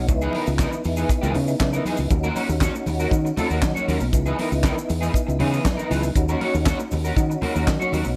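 Disco with a driving, danceable straight feel, this short section cut from a longer piece rides on a vamp alternating between C#m9 and D#m7. A tight funk drum kit, captured naturally in a small room, brings a high-tuned snare, tight kick, hi-hat and handclaps alongside a round, up-front fingered electric bass. An electric guitar at the edge of break-up adds dark, picked accompaniment through an ensemble chorus. A mellow tonewheel organ holds clean sustained chords with audible key click, chorus vibrato and a slow rotary speaker. Congas struck with hard hands and a grainy, compressed tube shaker sit in the background of a dry mix with little reverb.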